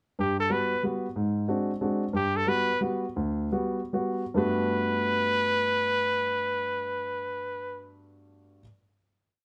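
A bright, punchy trumpet takes the lead in this short, complete jazz piece, playing a forceful bebop-style theme with scooped notes and light vibrato, sitting up front as a solo voice. Alongside it, a warm baby grand piano, also up front, supplies intimate, natural-sounding accompaniment with stride-style bass and close voicings, its action noise audible through close, detailed microphones. The mood is playful and relaxed, swinging in 3/4 in G major at a tempo between 129 and 185 BPM, moving through Gmaj7 and Ab7#11 before settling back on Gmaj7. The pace slows from 2.1 to 4.4 seconds, and from 4.4 seconds a final chord rings out. The trumpet stops at 7.9 seconds, and the piano sustains alone until 8.6 seconds in a light reverb.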